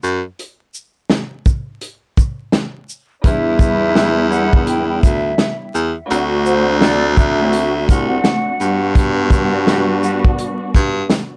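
A swung 84 BPM boom-bap groove from a warm, distant soul kit of kick, snare, hi-hat and shaker opens this gritty, moody E minor hip-hop excerpt over vinyl crackle, with a bright, subtone baritone saxophone holding the bass line up front, until a dark, lush bowed string section with cassette tape and plate reverb enters at 3.2 seconds on Em7, moving through D7 to Gmaj7, joined at 3.3 seconds by a breathy, hollow concert flute melody with tape echo, while a very quiet horn section adds smooth stabs underneath.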